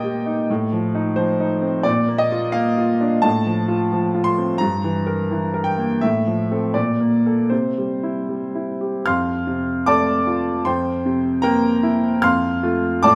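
A bright baby grand piano opens this romantic character piece alone and plays throughout, a short cut from a longer work. The mood is hopeful, and the tempo moves freely between 73 and 89 BPM in 2/4 with a rubato feel. The music begins in Bb major and settles into F major from 3.2 s, with harmonies that pass through a diminished chord and a Bbmaj7 before reaching a new passage at 9.1 s that rests on F and C7 over an F bass. The piano spans F2 to F6, and its brilliant, open tone carries a long sustain. Close, detailed microphones keep the instrument up front, while a wet recital hall reverb lets each chord bloom into the room.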